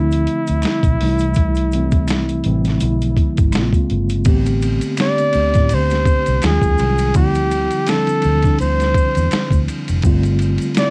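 Smooth and soulful, this short R&B and neo-soul excerpt in A minor moves at an unhurried 83 BPM with a gentle swing. An up-front flugelhorn carries the jazz-style solo melody with vibrato and a cassette-tape tint, over a mellow, clean tine electric piano heard through its built-in speakers, a dark, round, foam-muted fingered electric bass, and a gritty, compressed, pitched-down sampler-style kit with a thumpy kick. Maracas and group handclaps sit far back in a live room, while the dry home cassette recording drifts through rich chords from Dm9 to a closing G9sus4 at 10.0 seconds.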